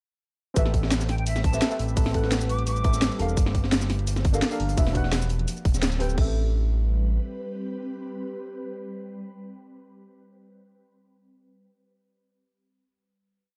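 A dark, warm small-room sound frames this rolling and melancholic liquid drum and bass piece in A minor at 171 BPM, where a tight electronic kick and a layered kit with a cracking snare, cabasa and crash sit up front. A gritty, saturated breakbeat loop with a rolled-off top sits in the background, while a smooth sawtooth-and-square synth bass plays long gliding notes under syncopated, rootless chord stabs treated with chorus and delay, moving from Am9 through Gm9 and Em9 and back. An ethereal, detuned pad with phaser and reverb enters at 1.7 seconds, a distant, pure-toned flute adds short answering vibrato phrases with delay, and after a band accent at 5.8 seconds the drums drop out, leaving a final Am9 to ring from 6.2 seconds.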